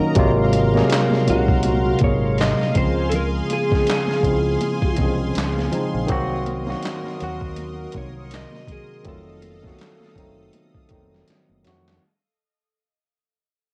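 A home cassette recording with light reverb, this fading slice of introspective, late-night R&B and neo-soul moves at 81 BPM in 4/4 with a gentle sixteenth-note swing, cycling through Ab13, Dbmaj7, Cm7b5 and F7b9. A worn, slightly out-of-tune tine electric piano sits up front, with a thick, detuned sawtooth pad drifting above it through chorus. A round, dark fingered dub bass, a gritty, compressed boom bap sampler-style kit with thumpy kick, snare, hi-hat and handclaps, and very quiet high-tuned congas fill out the groove, while from 1.3 seconds a slightly broken-up, lo-fi electric guitar through a small old amp carries the phaser-tinged melody before a drum fill at 11.3 seconds.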